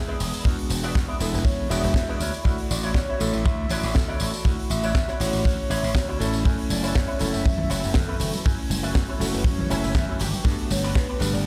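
A tight, up-front kick drives this sensual, groovy nu-disco excerpt at 120 BPM in F# minor, joined by punchy slap bass, a high-tuned snare with hi-hat and tambourine from a polished funk kit, a clangy vintage electric grand piano pumping with sidechain and tape echo, a twangy envelope-filtered guitar riff with ensemble chorus, and a mellow, round octave-layered synth lead with phaser and vibrato in the background, while damped congas enter at 6.7 s, a clean electric guitar fill appears at 9.5 s, and the whole mix sits in a large, roomy studio reverb.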